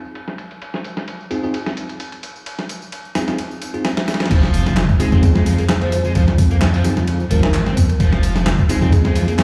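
A breakbeat excerpt heard as if played over a big sound system in a bare room, with large studio reverb and a low-pass filter softening the top, sets a raw, swaggering mood at 130 BPM in F minor with a light swing. Compressed, gritty sampler-style drums with a thumpy kick sit up front under quieter layered electronic handclaps, hi-hat and tambourine, while a bell-like tine electric piano plays clean stabs through a filter sweep and delay over an Fm7 chord. At 4.3 seconds the drop arrives with a very quiet impact, a deep, rumbling detuned saw bass, and a thick, double-tracked fuzz guitar riff with delay, joined from 5.2 seconds by a woody, mellow marimba melody in the background with a small-speaker tone.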